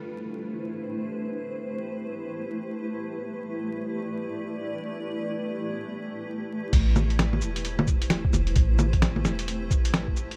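Ghostly and nocturnal, this future garage excerpt at 131 BPM in A minor, with a 62% swing on 16ths, opens on a blurred, evolving granular cloud pad holding an Am7 chord with built-in reverb and sidechain pumping, before a deep, round 808-style bass, a muffled, thumpy pitched-down kick and an up-front lo-fi sampler kit of bongos, cabasa, crash, hi-hat and snare arrive at 6.7 seconds, all beneath light reverb and vinyl crackle.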